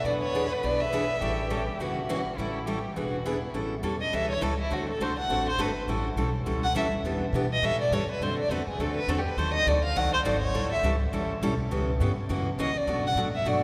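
Lively and charming, this fast acoustic string swing in the jazz manouche style runs at 206 BPM in A mixolydian, with swung eighth notes over a stream of seventh chords. A close, up-front bowed violin with a soft attack, vibrato and portamento carries the melody. A rich, boxy second violin plays alongside it from the start until 3.6 seconds, and from 4.0 seconds the lead violin takes an expressive solo, while a picked steel-string acoustic guitar plays up-front accompaniment and a woody, thumpy pizzicato upright bass on gut strings holds the low end, all sitting in the long, wet reverb of a church or concert hall.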